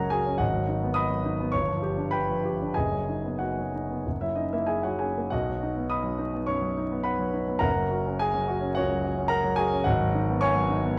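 Rubato phrasing flexes the 4/4 pulse in this lyrical, warm romantic character piece for solo piano, an 11-second passage cut from a longer work. The grand piano sounds polished and up front, spanning F#1 to D#6 as the harmony moves from G#m7 through G7 and B/F# before settling on F# and B and returning to G#m7 at 9.9 seconds. Close, detailed miking captures the instrument, set in a moderate recital-hall reverb with a layer of vinyl crackle.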